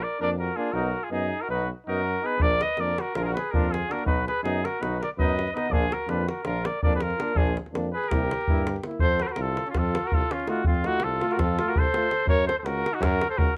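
Balkan brass band folk in a brisk 9/8 at 327 BPM in eighths, virtuosic and fiery, cut from a longer piece and speeding up throughout as it moves from Bb phrygian dominant to F phrygian dominant at 9.0 s. An up-front flugelhorn with light vibrato leads the melody in a vintage classical style over a second flugelhorn line and a clear, up-front tuba bass, while a brilliant trombone and a punchy, distant euphonium accompany in the background until 12.1 s. A tight davul joins at 2.4 s, and the close, detailed recording carries light reverb.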